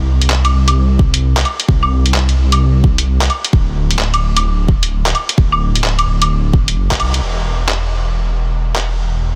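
A swung sixteenth-note groove in 4/4 drives this wistful, ghostly future garage clip, built on a dark, detuned sawtooth bass that rumbles low with a beating, saturated tone and pumps against the sidechain. A muffled, pitched-down sampler-style kit of claves, handclaps and hi-hat sits up front in a small room, while an overdriven electronic kick adds deep weight from 1.0 to 7.0 seconds. The dense, heavily limited mix carries light reverb, with a band accent at 6.9 seconds just before the closing section.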